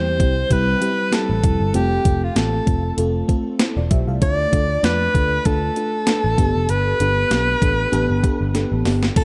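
This short excerpt of 1980s-style pop opens with a clear alto saxophone singing a romantic, nostalgic melody with vibrato, touched by tape echo, while an FM electric piano layered with a soft pad supplies dreamy, detuned chords treated with chorus and tremolo. Underneath, a vintage picked electric bass gives a round, foam-muted low end, and from 0.2 seconds a clean 12-bit digital drum machine joins with a thumpy kick, medium-tuned snare, hi-hat and crash, overdriven and up front in the mix. At 97 BPM in 4/4 with a light swing on the sixteenths, the harmony moves from C to F, Dm and Gadd9. A drum fill from 8.5 seconds leads to the final moment, where a warbling string machine cello chord appears at 9.2 seconds, barely audible. The production is dark and warm, set in a moderate, lush hall reverb, and tuned slightly below standard pitch.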